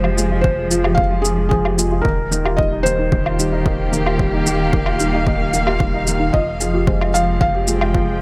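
A dry, short cut of hypnotic, moving piano and strings electronica in F minor at 112 BPM, where a felt-muted upright piano with audible action noise carries the melody over a woody, mellow second piano riff with delay, bowed chamber strings holding dark sustained chords with vibrato and sidechain pumping, a deep sine sub bass with tube saturation, a soft round pluck playing arpeggios in the background from 0.2 seconds, overdriven woodblock and shaker, and a punchy overdriven electronic kick drum entering at 0.4 seconds, all moving between Fmadd9 and Ebadd9.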